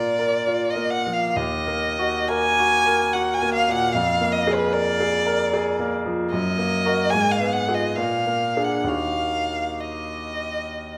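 A violin and a grand piano begin together in this elegiac, melancholic romantic duo in Eb minor, moving in a rubato 3/4 between 62 and 77 BPM. Up front, the rich solo violin carries the melody with expressive vibrato and portamento, while the bright, brilliant piano accompanies with deep bass and long sustain through harmonies that circle from Bb back to Ebm. A wet recital hall reverb surrounds the pair in this short passage cut from a longer piece.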